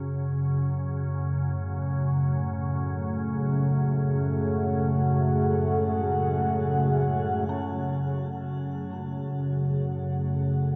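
In free time, this desolate, cavernous dark ambient drone opens with a calm, organ-like drone that fades in up front alongside a very quiet, ringing bronze singing bowl with slow metallic beating, and a deep, moody pad of sustained, detuned chords joins at 1.7 seconds. At 7.5 seconds a filter sweep passes over the drone as an eerie, inharmonic synth bell begins arpeggios in the background, its decaying tones coloured by chorus, phaser, diffuse delay and shimmer reverb. The whole excerpt sits in a vast, echoing cathedral space with a long, wet reverb tail.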